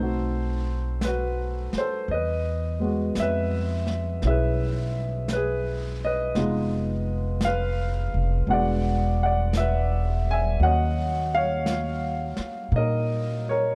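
A dark, intimate production with light reverb frames this smoky jazz ballad excerpt at a slow 56 BPM in 4/4, swung on the eighth notes. A smooth, vintage-toned baby grand piano and a woody pizzicato upright bass with steel strings sit up front from the start, moving through chords such as B7b9, Emaj9 and Ebm9. A brushed drum kit with a rolled-off top and a medium-tuned snare joins at 1.0 s, its hi-hat and snare sitting lower in the mix behind them.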